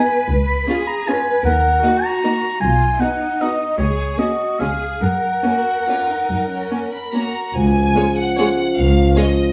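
Classical orchestral ballroom waltz in 3/4, elegant and sweeping, with a rubato feel, cut from a longer piece. From the start, a mellow oboe plays a second line with vibrato, sounding up front yet roomy, over a lush cello section and a focused, up-front double bass section in the low register. A clear violin section carries the melody, joined by a more expressive, close violin section on a second line and a smooth, even viola section in the accompaniment, each bowed with vibrato. The oboe stops at 7.2 seconds, and at 7.6 seconds a dark clarinet with a smooth top enters in the background while a bassoon with light vibrato joins the accompaniment. A wet stone room reverb sets the listener further back in the space.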